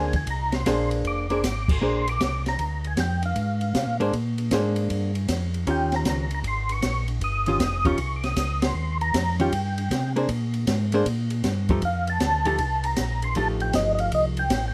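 Soul jazz organ trio in a soulful, greasy swing at 156 BPM in Bb mixolydian, where a soft, flute-like percussive tonewheel organ carries the melody over a round, mellow organ bass and a dark, compressed hollow-body archtop guitar comping up front, both organs coloured by chorus vibrato and a slow rotary speaker, while an acoustic jazz kit with a high-tuned snare, boomy kick and dark cymbals joins the band accents at 1.6 and 8.6 seconds through Bb9, Eb9 and F9 changes in this short cut from a longer piece.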